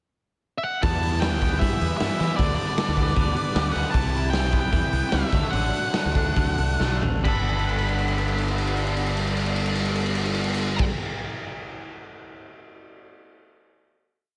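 A straight 4/4 indie rock groove at 131-154 BPM in G major, wistful and carefree, kicks off after a short pickup with a punchy, up-front raw garage drum kit, a growly fuzz fingered bass riff, ringing overdriven guitar chords with ensemble chorus, and clean twangy picked arpeggios tucked in the background, while a dark octave-fuzz lead guitar states a motif-based melody from 0.6 s, everything slowing down from 3.9 s through drum fills into a final Gadd9 chord at 7.3 s, bathed in lush hall reverb for a big arena sound.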